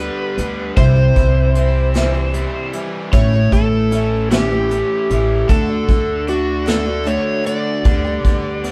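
An up-front, overdriven slide guitar carries the melody in this short folk rock and heartland rock excerpt, its fingered slide lines sitting between F#4 and D5 with a warm tone. Beneath it, a bright, shimmering twelve-string acoustic guitar is picked in octave-doubled accompaniment, its fresh strings giving a boxy, parlour-sized jangle. A dark, compressed electric guitar adds a double-tracked overdriven riff in the low-middle range, while a woody, thumpy upright bass plays pizzicato on gut strings near the front of the mix. Soft brush drums come in at 0.4 s, sounding distant and roomy with a medium-tuned snare, a tight kick and hi-hat. The band plays live together in one studio room with moderate reverb, moving through G/D, C, A and D at a slow 51 BPM in a straight 6/8.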